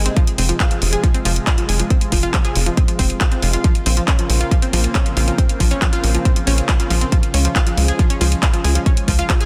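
Soaring and uplifting, this short cut from a longer uplifting trance piece moves in a straight four-four pulse over chords of Fm, Bbmadd9 and Db. A punchy, layered electronic kick sits up front from 0.2 seconds, over a house drum kit of handclaps and bright hats that enters just before it at 0.1 seconds, both set in a small room ambience. A tight sequencer bass of sawtooth and square waves drives underneath with a fast-attack, decaying filter pluck and sidechain pumping. Above it, a round analog pluck plays arpeggios with chorus and tape echo, while a lush, thick pad of detuned unison sawtooth and square waves holds sustained chords with a slow attack, chorus and phaser; both of these parts also breathe with sidechain pumping. A dense, heavily limited modern master wraps the track in digital ambience.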